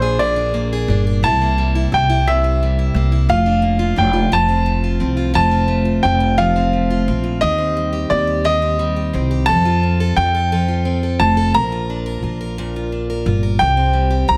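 From the first moment, a clear grand piano, a bright picked acoustic guitar and a woody upright bass sound together in this romantic, swaying six-eight pop ballad, a short passage cut from a longer piece. The piano carries the melody up front in a high register, its tone natural and unadorned. Beneath it, the full-bodied jumbo acoustic guitar, plugged in and picked, fills out the accompaniment across its middle range. The pizzicato upright bass sits forward with a thumpy, steel-strung sound, anchoring the low end. The harmony drifts from Bb7 and C7 through Bb/F, F, Cm/Eb and Fadd9 before settling on Bb and closing on C5 at 13.6 seconds. A studio reverb surrounds the trio, lending the straight, gently rocking feel a soft sense of space.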